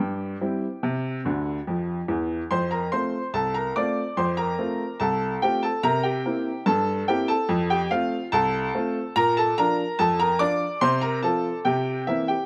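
Closely miked with light reverb, this detailed recording captures a playful, jaunty ragtime excerpt in F major at 72 BPM in straight 2/4, tuned to A4 = 439 Hz and played by a solo upright piano whose clear, woody tone sits up front across a range from C2 to D6, with a brief fill from 1.3 to 2.5 seconds as the chords move from C through F, C7, Bb and F/C before returning to C7 by 11.7 seconds.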